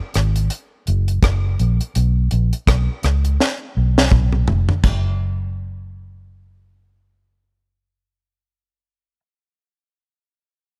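A dry, deep reggae drum kit of hi-hat, tight kick, rim click, high-tuned snare, splash cymbal and toms opens this tender, sweet lovers rock reggae fragment in F# major at 83 BPM with a swung 16th feel, joined a moment later by a dark, round, foam-muted vintage electric bass that sits up front. The kit plays a fill from 3.4 s and stops at 5.0 s, leaving the amped bass alone until 9.2 s in a close, nearly reverb-free sound.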